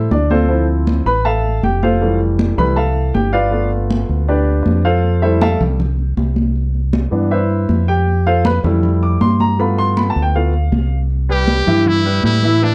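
Worn, warbling cassette tape with wavering pitch and light reverb colors this festive, sunny salsa clip at 158 BPM in C major, cut from a longer piece. A clear, polished baby grand piano carries a solo from the start until 11.1 seconds over Fmaj7, G7 and Cmaj7 chords, joined by a deep, round fingered electric bass up front and high-tuned, damped congas struck with hard hands in a distant large room. At 11.3 seconds a brilliant, punchy trumpet enters with vibrato and scooped notes in a forceful pop style.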